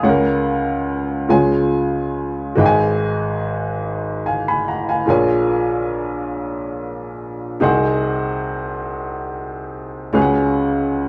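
Gospel in a straight 6/8, this short fragment of a longer piece has a hopeful, soulful mood carried by a solo upright piano from 0.0 to 11.1 seconds. The piano sits up front with a woody, intimate character, and the audible action noise of its mechanism gives it a natural, close-up presence. Its range stretches from G#1 down low to B5 up high, and the instrument is tuned slightly sharp of standard pitch, to A4 = 444 Hz. The harmony moves from F#/C# to C#7, then through G#m7, A#m7 and G#7/B# before settling on an unresolved C#7sus4 near 10.1 seconds. A moderate studio reverb lends a sense of a real room, while the top end rolls off above 10.6 kHz for a soft, rounded sound.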